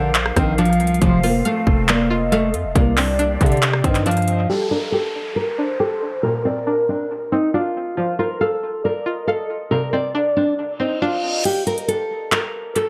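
Eerie and melancholic, this half-time trap cut at 138 BPM sits in an echo-heavy mix with moderate spring reverb and digital ambience. A fingerpicked nylon-string guitar carries the melody up front, its classical tone softened by a low-pass filter and trailed by dub echo, while a velvety, detuned synth lead with chorus and vibrato traces a second line. A twangy, string-like resonator pluck supplies accompaniment under a filter sweep, and a bright, airy flute ensemble holds sustained chords in the background alongside a growling, buzzy 808-style bass until 4.5 s. The trap kit, with its hard-clipped kick, metallic hats, handclaps and rim clicks, drops out at 4.4 s as a downlifter takes over. A dark, veiled muted string section adds a very quiet bowed stab near 1.0 s, and a reverse cymbal leads into the final stretch at 11.5 s, where the drums return with the kick muted.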